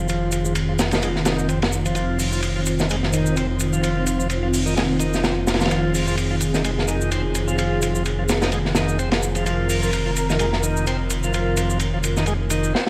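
Swaggering and raw, this breakbeat excerpt at 128 BPM in F minor rides a swung groove on a single Fm7 chord, with a crunchy, saturated drum kit of dark cymbals and a medium-tuned snare up front, a tape-warm shaker, a thick, menacing detuned saw bass holding F1, a lush, airy pad of sustained chords through chorus and phaser, and a bright, shouting tonewheel organ riff with key click, slow rotary speaker, 12-bit sampler grit and digital delay, both organ and pad under a filter sweep, all wrapped in small-room ambience and vinyl crackle before a drum fill at 12.7 seconds.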